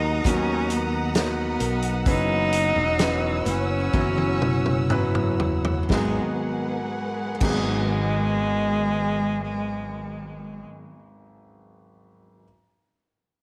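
A pop ballad fragment, longing and melancholic, where a rich, intense solo cello sings the melody up front over a dark, lush studio string section, both bowed with vibrato. A warm grand piano with deep bass and short sustain, a bright, full-bodied steel-string acoustic guitar picking arpeggios in the background, and a warm, direct fretless electric bass fill out the accompaniment, with a natural country drum kit entering at 0.2 seconds with a fat snare, punchy kick and dark cymbals. The pace slows over the opening 5.9 seconds, a drum fill leads into the next passage, and light reverb gives everything a small-room ambience.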